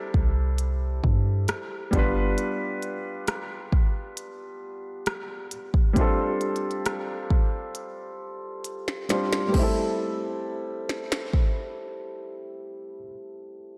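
A dreamy mix soaked in lush hall reverb gives this late-night, sensual piece of contemporary R&B its hazy glow. At 67 BPM in 4/4 with a straight feel in A minor, a felt-muted upright piano carries the accompaniment, its soft, intimate tone shaped by a low-pass filter sweep through the opening 9.5 seconds. A deep, boomy 808-style bass with a sine body and a noise layer sounds only briefly near the start, stopping at 2.4 seconds. The glitchy electronic drum kit sits up front with kick, tiny snare, clicky hats, rim clicks and crash cymbal, and a drum fill leads into the next section. The chords move from C69 to G7 and F69 before settling on Am7. The drums drop out at 11.5 seconds while the mellow piano carries on to the end of this cut from a longer piece.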